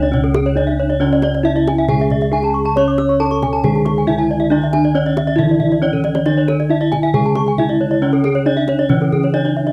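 A hypnotic, brilliant fragment of Balinese gamelan in straight 4/4 opens with everything at once: a bronze metallophone melody struck with a horn mallet, its paired tuning giving shimmering beats in a boxy small room, over a mellow, soft accompaniment metallophone played with padded disc mallets, two bright, ringing arpeggio metallophones high above, all carrying a cassette-tape colour, while round, beating bossed gongs hold the bass and a tight, close kendang sits in the background, adding a fill from 5.9 to 6.3 seconds, all in a light reverb on a homemade cassette recording.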